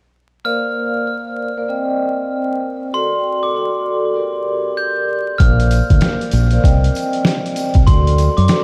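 This dark, tough boom-bap hip-hop passage at 97 BPM with a swung 16th feel opens at 0.4 s on a mellow, vintage-toned vibraphone with slow motor vibrato and a ringing, bell-like glockenspiel melody with delay, drifting through a Bbadd9, Cm add9, D and Gm progression. At 5.4 s a gritty, pitched-down sampler drum kit with a thumpy kick and tape-warm compression arrives up front alongside a round, deep dub fingered bass, while a jingly tambourine sits in the background from 5.7 s. The whole dreamy mix is soaked in a huge ambient reverb and vinyl crackle, and it is cut from a longer piece.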